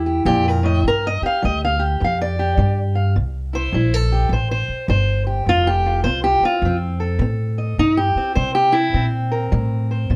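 A fingerpicked steel-string parlour guitar with fresh strings and a touch of plate reverb carries the melody up front in this gritty, rollicking excerpt of acoustic country blues, swinging at 104 BPM in C mixolydian over C7, G5 and F chords, with a woody pizzicato upright bass beside it throughout in a dark, warm production.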